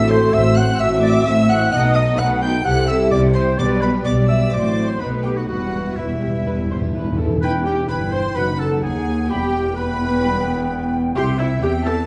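A quick classical-period movement for symphony orchestra in E minor, this spirited, lively passage, cut from a longer piece, moves at 128 BPM in a straight 4/4. A rich chamber violin section carries the focused, bowed melody high above, while a bright solo oboe, an airy flute ensemble, a mellow clarinet and a clear, smooth studio violin section in the background weave second lines beneath it. A close, even viola section supplies accompaniment, a dark French horn section holds sustained chords, and an intense double bass section joins a distant cello section on the bass. Timpani played with medium mallets enter at 3.6 seconds, close and dry, with a fill from 5.5 seconds. At 7.4 seconds a punchy, tight trumpet section enters with distant, roomy stabs as the harmony moves from E minor through F#m69 and back, closing on C. The whole orchestra sits in a stone room with a one-second reverb, giving the sound a soft, rounded top.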